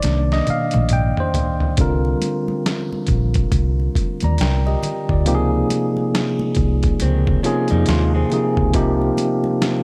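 This R&B and neo-soul excerpt has a sultry, late-night mood, with a swung groove and a dreamy mix soaked in plate reverb. A clean, direct tine electric piano sits up front, taking a solo over a drum fill in the first 1.8 seconds before settling into accompaniment over chords moving from Cm9 to Dbmaj9 and back to Cm7. The dusty, sampler-style drum kit is gritty and overdriven, with a thumpy kick, a medium-tuned snare, hi-hat and toms that sound re-recorded in a small room. Beneath it, a vintage muted fingered electric bass gives a dark, round, punchy foam-muted low end, and very quiet, damped, high-tuned congas with a thick skin add texture in the background. Near the end, from 7.0 to 8.7 seconds, an electric guitar through a small old amp slips in with a picked second line, its warm, slightly broken-up, lo-fi tone adding a final touch of grit.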